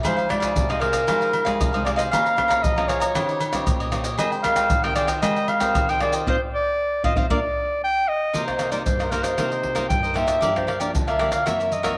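Samba and choro at 116 BPM in a bittersweet, yearning mood, with a warm, classical-style clarinet singing the melody up front over a bright, crisp picked cavaquinho and a dark, woody fingerpicked nylon-string guitar on old strings. Agogo bells, maracas, pandeiro, tamborim and a deep surdo, played with soft hands in a live room, drive the groove, and the band hits an accent from 6.3 to 8.3 seconds before the harmony settles into C minor at 8.3 seconds. A wet spring reverb and small room ambience surround this short cut from a longer piece.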